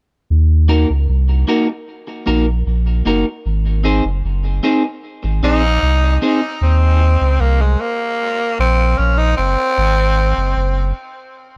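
Steeped in studio reverb, this heavy, meditative dub reggae passage moves at 76 BPM in Eb dorian over a deep, round sub bass that sustains from 0.3 seconds onward. A clean, twangy electric guitar with tape echo plays accompaniment until 6.5 seconds. A raspy, gritty tenor saxophone enters at 5.4 seconds with vibrato and its own tape echo, sounding distant and roomy as it carries the solo melody over the chord shift from Ebm and Ab toward Eb5.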